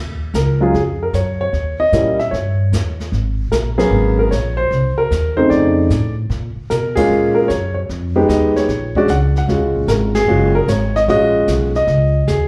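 This short cut from a longer piece sounds like a live club gig heard through the venue's PA, with light, small-room reverb giving it an intimate, roomy feel. It's a cool, swinging jazz piano trio in 4/4, moving through rich minor and altered chords such as Ebm9, Abm11 and F7b13. The upright bass opens the excerpt alone, plucked and woody on steel strings, sitting up front. The baby grand piano carries the melody from 0.3 s, its natural, close tone carrying audible action noise and a slapback echo. The brush drum kit comes in at the same moment but sits distant and low, with dark cymbals, a medium-tuned snare and a boomy kick. The whole band hits accents together at 3.7, 6.9 and 10.1 seconds.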